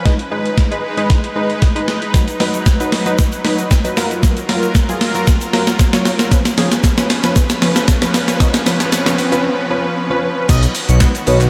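A straight 4/4 groove at 115 BPM drives this carefree, euphoric dance-pop excerpt, with a gated 80s digital drum machine up front (thumpy kick, gated-reverb snare, handclaps, hi-hat, shaker and crash) and a grainy egg shaker joining in the background at 2.1 seconds. A lush supersaw pad and a punchy, nasal funky polysynth comp with chorus both pump to the sidechain over G#m, B, F#maj7 and C#7/E#, while a very quiet riser builds from 4.1 seconds under a drum fill, fading out at 9.4 seconds as a brief break begins. At the drop at 10.5 seconds, a fat, detuned analog bass lands on B with an airy, dreamy lead with phaser and vibrato floating behind it, all set in a dreamy mix soaked in huge ambient reverb.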